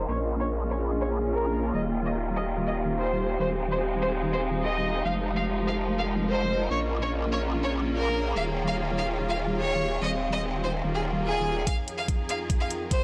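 Menacing and chaotic, this heavy wobble dubstep fragment in half-time pairs a bright chamber violin section's melody, carried on dub echo, with a clear studio string section whose bowed sustained chords carry vintage 12-bit sampler grit and sidechain pumping, over a warbly tape-like pad of nostalgic lo-fi haze. Beneath them an aggressive, detuned growl bass with chorus and overdrive rumbles through a filter sweep until 11.7 seconds, all within a lush hall reverb. At that point the build-up begins, as an overdriven, knocking electronic kick and electronic hi-hat enter alongside a barely audible riser.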